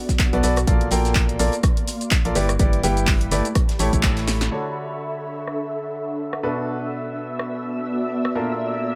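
This piano house excerpt opens on an ethereal, airy pad with chorus and built-in reverb, pumping against the beat, before the drums and a clear, intimate grand piano riff arrive almost at once at 125 BPM with a swung sixteenth feel in D major. An up-front, tape-warm electronic kick drives the first half alongside a punchy analog drum machine of claps, hi-hat, rim click, shaker and snare, with a very quiet cloth-damped acoustic kit adding a fat, rolled-off snare and hats underneath. A hollow, organ-like FM bass with a dark, percussive decay supports the opening chords from Bm7 through Bbmaj7, G6 and A7, while the piano, touched with digital delay and audible action noise, carries the riff. A band accent and a drum fill mark the turn near 4.5 seconds, where the kick and bass drop away and a silky, bright analog string pad enters with vibrato and chorus over Dmaj7 and Bm7, as filter sweeps move across the drums and the pad. 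The mood is feel-good and uplifting, set in a light, small-room ambience.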